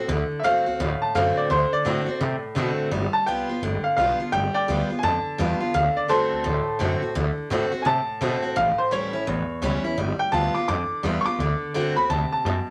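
A swinging 4/4 rockabilly number with a retro, rowdy spirit, this cut from a longer piece sets a bright, full-bodied picked steel-string acoustic guitar with audible finger squeak over a thumpy, dark pizzicato upright bass on gut strings, while a clear upright piano with short sustain carries the melody up front through a blues-flavored run of D7, G7 and A7 chords in a moderate studio room.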